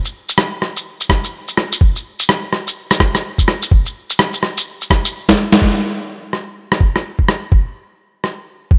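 A thumpy, compressed electronic kick drum anchors this ghostly, melancholic future garage excerpt from 1.1 seconds, while up-front electronic shaker, rim click and a medium-tuned snare, muffled by low-pass filtering and given a tape-warm, small-room character, carry a swung sixteenth-note groove that opens at 0.1 seconds, all set in a lush hall reverb, with a drum fill at 5.3 seconds leading into the second section.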